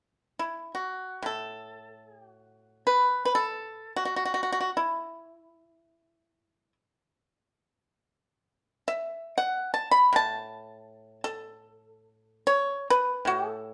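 A percussive, up-front acoustic pipa played with fingerpicks carries this elegant, flowing solo in the Chinese traditional style from 0.4 to 13.7 seconds, ranging from A2 to B5 with a dry attack set in a moderate large-studio reverb, in a short section cut from a longer piece.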